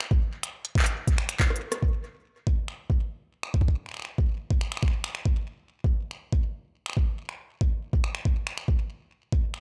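A straight 4/4 pulse drives this playful, glitchy IDM excerpt, cut from a longer piece and built entirely from percussion. An organic electronic drum kit of finger snaps, handclaps, hi-hat and rim click runs from the opening to 9.6 seconds, its crisp hats and overdriven, produced tone sitting up front, with digital delay adding a scattered edge. An electronic kick drum joins at 0.1 seconds, a sampler-style, pitched-up, gritty thump that is compressed and placed up front, and sits noticeably louder than the kit. A short drum fill at 1.4 seconds leads into a new section at 1.8 seconds that carries the groove through to the end. Both drum parts were re-recorded in a large room, yet the overall sound keeps little reverb, leaving the beat dry and close.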